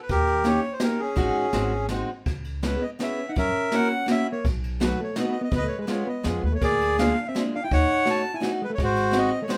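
A musette waltz in C# minor at 167 BPM, played with a rubato feel, this short excerpt from a longer piece feels whirling and nostalgic. A reedy, bright bandoneon carries the melody up front from the first moment, while a woody, thumpy pizzicato upright bass and a brushed jazz kit with dark cymbals, a medium-tuned snare and a boomy kick enter almost at once. A fingerpicked steel-string parlour guitar, boxy and up front with fresh strings and audible finger squeak, adds accompaniment from 0.4 seconds. At 2.6 seconds a clean, dark hollow-body electric jazz guitar joins with a fingered second line in the middle register. The harmony moves through seventh chords such as D#7, C#m7, F#7 and D#m7b5 before landing on G#7, all set in a moderate studio reverb.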